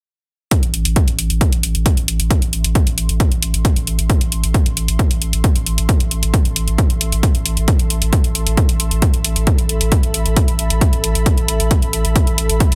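Hypnotic and industrial, this driving peak-time techno cut opens at 0.5 seconds with a heavy, up-front layered kick and electronic hi-hats that pump under sidechain, all re-recorded in a large room, while a deep, thick sine sub bass, overdriven and low-pass filtered, sits on a single low A with a fast attack and sustain. From 1.8 seconds an ethereal, airy pad of detuned sawtooth and triangle voices in unison fades in slowly, soft in the mix with ensemble chorus, built-in reverb and its own sidechain pumping. The track holds on one A minor chord with a dry overall sound, as a fragment cut from a longer piece.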